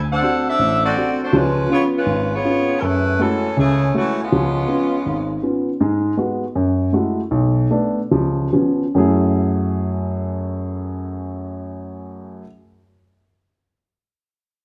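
This sultry, dramatic jazz fragment, cut from a longer piece, opens with a dark grand piano and a saxophone section entering together in F# minor. The piano is up front with long sustain as it accompanies. The saxophones are tight and mellow, with a soft attack and vibrato, carrying the melody. The swung 4/4 moves at a brisk 137 to 162 BPM over chords such as D7, C#7 and F#m9. After the horns drop out at 5.4 seconds, the piano carries on alone and the tempo slows between 5.8 and 9.0 seconds before settling back on F#m9. A large studio reverb with a 1.3-second tail gives the recording a roomy, wet sheen.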